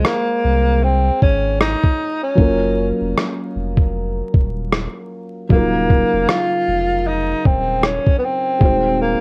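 A loose, swung groove sits under this mellow, cosy lo-fi hip hop fragment, carried by a sampler-style drum kit with a muffled, thumpy kick and rim clicks, compressed and re-recorded in a large room before dropping out at 8.8 seconds. A saturated sub bass with a thick, triangle-like tone, fast attack and sustained body sits deep underneath. A felt-muted upright piano plays soft, dark accompaniment through a cassette-tape haze, its action noise audible and intimate. Out front, a breathy tenor saxophone leads in jazz style, with whispered subtone, gentle vibrato and scooped notes trailing into tape echo. The harmony drifts from Dbmaj7 to Ebm9 at 2.4 seconds before landing on Ab7/Eb. The whole mix is wrapped in light reverb, vinyl crackle and the warbly pitch drift of worn old tape.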